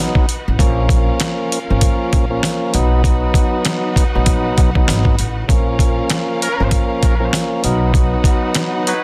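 A gritty, sampler-style soul drum kit sits up front with a thumpy kick and fat snare, driving this reflective, moody boom-bap hip-hop excerpt with a swung sixteenth-note feel. A lightly overdriven tonewheel organ with cassette-tape colour and vibrato carries the accompaniment alongside lush, bowed studio strings holding sustained chords, while a woody pizzicato upright bass enters at 0.5 seconds. At 6.4 seconds a tight, mellow trumpet section adds stabs with light vibrato and delay, all within a dense, heavily limited modern master.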